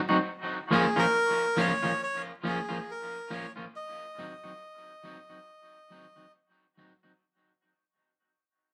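A short reverberant room sound with a layer of vinyl crackle frames this brief, meditative reggae fragment, cut from a longer piece and fading out across its full length of about 7 seconds. At a slow 69 BPM in 4/4 with a lightly swung sixteenth-note feel, an electric guitar sits up front on accompaniment, its fingered tone warm, twangy and just on the edge of break-up, with a dub echo trailing behind it. A melodica carries the melody from 0.7 s, its reedy, breathy and nasal voice carrying the plasticky character of its case as it stays in a narrow upper range. The serious mood comes from a move from Bb minor to a C diminished chord at 3.7 s. The band sounds as if it is playing live together in one room.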